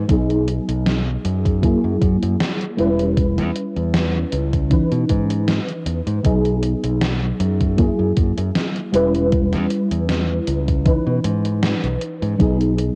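A soft, round, dark FM electric piano sits up front, coated in phaser, chorus, 12-bit sampler grit, cassette tape and analog delay, opening this nostalgic, dreamy vaporwave excerpt at 78 BPM in B major alongside a bright, direct fingered electric bass, before a thumpy overdriven electronic kick and a gated 80s drum machine's hi-hat and gated-reverb snare, both sampler-style and re-recorded in a small room, join at 0.1 s over a lightly swung B6, F#9, Em6, C#m9 progression, the whole carrying a hazy home-cassette character.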